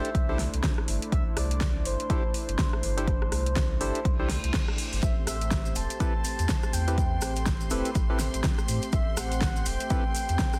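A punchy, overdriven electronic kick sits up front at 123 BPM in 4/4, with a 16th-note swing that gives this smooth, late-night deep house passage in A minor its easy sway, while a layered kit of fat snare, rim click and metallic hats adds its own overdriven grit. Underneath, a round sine sub bass pumps against the kick with tube saturation, and a detuned sawtooth analog pad holds sustained chords through a soft attack and long release, moving from C6/9 to Am9 at 5.0 seconds. Hollow, ring-modulated organ stabs with chorus and delay punctuate the groove, and a breathy, flute-like synth lead carries the melody with vibrato, subtle chorus and tape echo. A reverse cymbal enters at 4.2 seconds and rises into the chord change at 5.0 seconds, after which grainy acoustic maracas and a lush, bowed violin section on a high C6 join quietly in the background. Light reverb gives the whole fragment a digital sheen, and the master is dense and heavily limited in a modern way.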